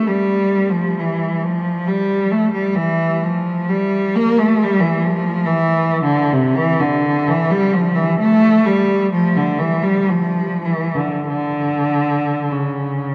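Yearning and lonely, this short classical excerpt for unaccompanied cello unfolds freely and expressively in D minor, in 3/4 with a rubato feel that drifts between 47 and 70 BPM. A single bowed cello plays throughout, from 0.0 to 13.1 seconds, staying between C3 and Bb3. Its tone is rich and smooth, with an even line and vibrato, and it sits up front in the mix while still sounding somewhat distant. A wet cathedral reverb with a 4.3-second decay surrounds the instrument in a long, resonant wash. The dark, warm production deepens the solitary, yearning character of the phrase.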